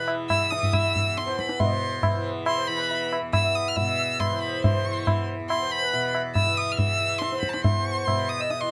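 A brisk 139 BPM in 7/4 with a straight feel drives this short Hindustani classical fragment, a devotional and radiant passage cut from a longer piece and tuned to A4 = 441 Hz. Low-tuned, ringing tabla enters at 0.1 s and sits up front, close and dry, carrying the cycle. A single bowed violin takes the melody between A5 and F6, rich and focused, with a singing vibrato placed boldly forward. Beneath it, a hand-pumped harmonium adds a reedy, nasal, breathing second line from B4 to E5, its tone boxy as if heard in a small room. A softly plucked tanpura holds a buzzing, shimmering, warm drone from E2 to E3, and the whole 8.7 seconds is captured with close, detailed microphones and a light touch of reverb.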